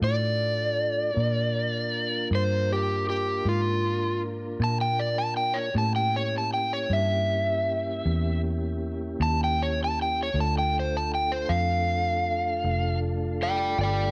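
Mournful and smoky, this slow blues in 12/8 at 52 BPM sits in D harmonic minor, with an overdriven slide guitar carrying a dark, gritty solo up front across the whole 14.1-second cut from a longer piece. Beneath it, a mellow tonewheel organ holds soft, flute-like chords through a slow rotary speaker, while a vintage muted electric bass, round and punchy, anchors the low end. The chords move from Dm to Bb7, then A7b9 at 5.7 seconds before returning to Dm, all set in a light reverb.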